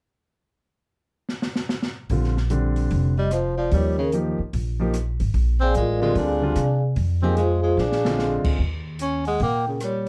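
Soft-mallet vibraphone, mellow and ringing in plate reverb, carries the melody from 3.2 seconds alongside a clear, subtoned tenor saxophone second line in this swinging small-group bop excerpt at 148 BPM in Bb mixolydian, over woody, growly upright bass, a deep-voiced grand piano accompanying until 8.6 seconds, and a dark, smooth small-room drum kit that opens with a fill at 1.3 seconds.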